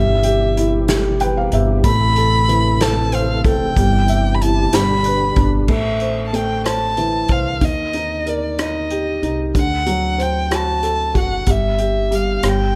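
Romantic and tender, this excerpt from a slow pop ballad in six-eight sways at 62 dotted-quarter beats per minute. A dark, woody violin carries the melody up front, bowed by a single player with vibrato and a smooth top, while a felt-muted upright piano accompanies with a soft, boxy, intimate tone, short sustain and audible action noise, adding a brief fill at 0.9 seconds. A clean tonewheel organ holds sustained chords in the background through chorus vibrato and a slow rotary speaker, its key click faintly present, before dropping out at 5.7 seconds as the second section begins. Underneath, a pizzicato upright bass with steel strings gives a deep, dusky foundation, and an acoustic drum kit played with bundle sticks sits distant and roomy, its dark cymbals, medium-tuned snare, rim click and tight kick keeping time. The harmony drifts from Em/G through Am and C/G to G, then turns to Am, a striking Eb and D7 before settling back on Em/G, all wrapped in light reverb and studio ambience.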